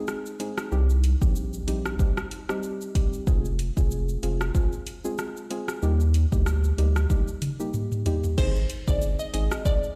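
A dark, nasal chord stab with chorus and sidechain pumping opens this hypnotic, bouncy dancehall excerpt. An electronic afro-pop drum kit sits up front almost at once, its deep kick, metallic hats, rim click, shaker, toms and crash carrying a tape-warm swing, and a thick, saturated sub bass enters at 0.7 s. After a drum fill, a glassy, crystalline wavetable pluck with chorus and digital delay takes the melody at 8.4 s, all heard through stone room reverb as if played on a big sound system in a bare room.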